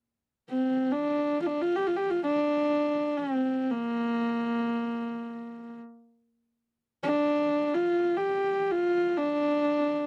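A dry, close studio sound in a 1970s style, touched by light reverb, frames this brief passage of Mongolian folk music, cut from a longer piece. A single horsehead fiddle carries the whole passage as a solo, entering at 0.5 s and sounding until the passage ends at 10.1 s. Its bowed horsehair strings give a husky, nasal, earthy tone, with an airy quality to the bow. The player colours the line with light vibrato and portamento, and the instrument sits up front in the mix. The mood is vast and proud, unfolding in a single open section that spans Bb3 to G4.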